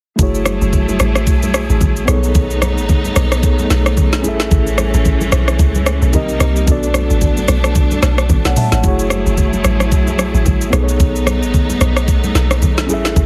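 From 0.2 s, this hypnotic, deep amapiano cut at 111 BPM arrives as a full drop, with a mellow tine electric piano heard as if through built-in speakers and lush, bowed studio strings with vibrato that pump against the sidechain over chords moving from F#m9 through B13, Amaj7, Cm7 and Bm7. A round, dark log drum bass with a fast attack and a noisy FM edge sits beneath an up-front, tape-warm electronic R&B kit of knocking kick, woody snare, rim click, hi-hat, shaker and toms, swung at 58% on the 16ths. Soft-handed, thin-skinned congas sit dry in the background, and the whole piece carries a heavily compressed, radio-like sheen.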